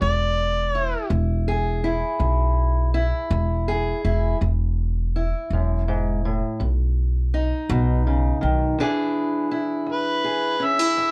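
An overdriven, gritty harmonica with light vibrato, tongue slaps and scooped notes opens this rollicking acoustic country blues excerpt at a slow 55 BPM in 12/8 and returns at 9.9 seconds for a jazz-style solo, over a dark, boxy fingerpicked parlour steel-string guitar moving from E to B to E7 and a woody, growly pizzicato upright bass that drops out at 8.7 seconds, with light reverb.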